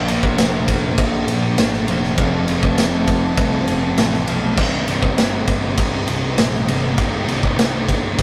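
Dark and brooding, this quiet-loud alternative rock excerpt in C minor moves at a straight 100 BPM in 4/4, with a thick fuzz guitar riff playing alongside a crunchy, very quiet overdriven guitar, a gritty fuzz-laden picked bass, a raw, punchy garage drum kit up front from 0.1 seconds in a bright stone room, and a faint, softly bowed chamber string section holding sustained chords beneath a Bb, F and Cm7 progression, all captured as a rough rehearsal-room recording with light reverb.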